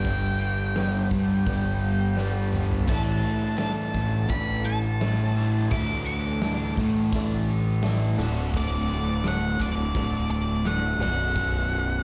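Classic rock with a brooding, gritty mood, caught live through a club PA: a dark, distorted octave-fuzz lead guitar carries the melody over a round, up-front fuzz bass, three overdriven rhythm guitars (one biting and double-tracked with phaser, one semi-hollow and bright, one raw and lo-fi) riffing in the background, a clear, woody upright piano accompanying behind them, and a big, punchy rock drum kit that plays a fill at 2.2 seconds as the chords move from G through Asus4 and D to Bm.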